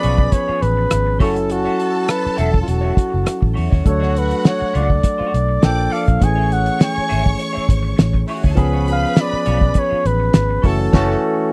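Lush 1970s-style soul with a romantic, warm mood, this brief passage cut from a longer piece moves at an easy, lightly swung pace. A breathy, mellow flugelhorn carries the melody up front in a jazz style, with light vibrato and scooped notes, while a studio violin section sings a second line with lush bowed tone, soft attacks and expressive portamento. Beneath them, a barky tine electric piano supplies bright, direct accompaniment, and a clean, twangy electric guitar picks a riff in the background through a wah, its pitch drifting in a warbly way. A vintage foam-muted fingered bass sits round and dark up front, alongside a cloth-damped, thuddy drum kit with a fat snare, tight kick, rim clicks, hi-hat and dark crash cymbals. The dry, close 1970s-style studio sound keeps every part intimate, and the band hits an accent together from 10.9 seconds to the end at 11.5 seconds.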